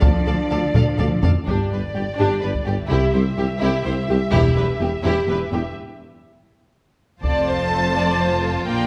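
Moving in a straight 6/8 at 83 BPM, this dramatic, heroic slice of epic orchestral film score rides on a hard-sticked taiko ensemble, with drum fills at 0.8 and 6.5 seconds and a break at 5.8 seconds where the chords drop away before landing on F at 7.2 seconds. Lush, vibrato-laden violin sections carry a distant, focused melody over a clear, intense second line, while smooth violas fill the middle, a very quiet dark French horn section holds chords, and cellos, bowed double basses and a mellow tuba anchor the bass, the tuba stopping at 5.6 seconds. The strings and brass sit in the reverberant ambience of a scoring stage, while the taiko ensemble sounds as if played in a small room.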